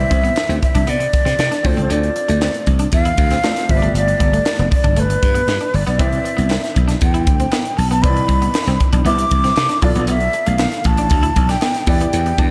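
A lush hall reverb gives this polished 1980s jazz-funk pop excerpt a big arena sound, with a breezy, urban mood at 117 BPM in C major. Up front, a breathy, mellow silver concert flute with vibrato carries the melody over a growly slap bass and a punchy fusion kit with a high-tuned snare and a gritty, saturated pumping-room tone. Meanwhile, a clear baby grand piano with lush chorus and a twangy, slightly broken-up electric guitar riff sit in the background, both sharing the flute's slapback echo, as very quiet group handclaps join at 0.4 s and the chords move from Cmaj9 through Dm7 and G7, back to Cmaj9, then on to Bm7b5 and Em7.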